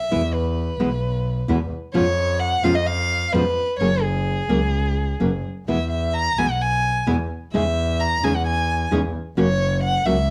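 A rubato tango in 4/4 stretches and relaxes its pulse, giving this short cut from a longer piece a dramatic, melancholic cast. The bowed violin carries a solo line from 0.0 seconds to the end, sung with vibrato, soft attacks and expressive portamento, heard close and up front. Beneath it, a fingerpicked nylon-string guitar supplies full-bodied, deep classical accompaniment through a harmony that moves from E through C#7/E# and F#add9, back to E and on to C#madd9/E before settling on F#. A single bowed double bass anchors the low end with a nasal, reedy, gut-string tone and an airy bow in a period style. All three players sit up front, wrapped in a moderate studio reverb.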